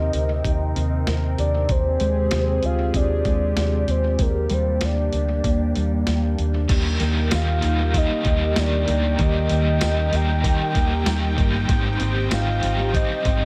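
A soft, octave-layered synth lead carries the melody over a swirling, phased analog pad, dark chorused guitar arpeggios and a round, foam-muted electric bass. A gritty, pitched-down boom bap drum kit of thumpy kick, high-tuned snare, hi-hat, tambourine and crash enters at 0.1 seconds in this floating, blissful dream pop excerpt at 96 BPM in Eb major, and at 6.7 seconds a crunchy overdriven guitar joins with tremolo and analog chorus as the chords move from Cm7, Fm7 and Ebmaj7 to Eb and Abmaj7. Dub echo trails the lead, the clean guitar and the drums, while bass and drums sit up front in an echo-heavy mix with light reverb and digital ambience.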